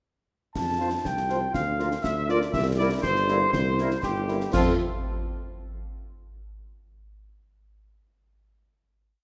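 A mellow trumpet section carries the melody up front in this short, festive military-style march for wind band, entering at 0.6 s alongside a tuba with light vibrato playing bass on the beats. Behind them, a dark woodwind section with vibrato and a soft-attack French horn section add after-beat and sustained chords from 0.8 s, while a close, dry group of concert snare, clash cymbals and concert bass drum keeps a marching snare over the bass drum on the beat. The rousing piece sits in a wet concert hall reverb and closes on a final chord from 4.5 s.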